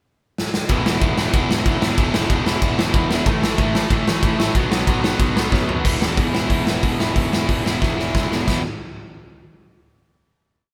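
Punk rock with an upbeat, energetic drive, this short complete piece opens with a drum fill at 0.4 seconds before two guitars and bass crash in together at 0.7 seconds. An up-front rock kit with bright cymbals, a tight kick and a medium-tuned snare plays a two-step groove. Beneath it, a crunchy guitar hammers eighth-note power chords, a distorted background guitar adds driving barre chords, and a growly, punchy overdriven bass pushes eighth notes through a riff on E, A and B, heading into an outro and a final E5 chord at 8.5 seconds, all captured as a band playing live in one room with light reverb.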